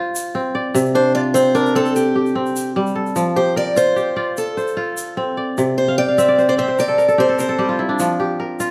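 Set in a moderate recital-hall reverb, this joyful, flowing excerpt of West African string and xylophone music in F major moves in a straight 12/8 at 99 BPM (dotted quarters), with a ringing, crisp fingerpicked kora spinning arpeggios up front from the start and adding a fill at 5.9 s, a grainy, bright egg shaker keeping quiet time beneath, and a boxy, parlour-toned picked steel-string acoustic guitar carrying the melody with a slapback echo from 1.0 s to 7.8 s.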